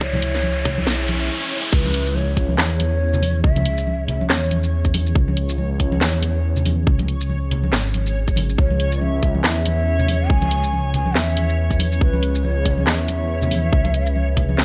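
A breathy, mellow ney carries the melody with vibrato and dub echo in an unsteady, close-miked performance, playing until 4.9 seconds and returning at 8.6 seconds over a heavy, cavernous deep dubstep groove at 140 BPM in C# minor, swung and half-time. After a short build-up with a riser, swell and a filter sweep on the moody ambient pad, the drop lands at 1.7 seconds, driven by a rumbling, detuned saw bass with tube saturation, a tight electronic kick, and a tape-warm garage kit with a cracking snare, handclaps, hi-hat, shaker and crash. Soft-handed congas sit in the background, while a reversed, granular swelling texture enters at 3.0 seconds and drifts dreamily alongside the pad's sustained chords in this fairly dry excerpt cut from a longer piece.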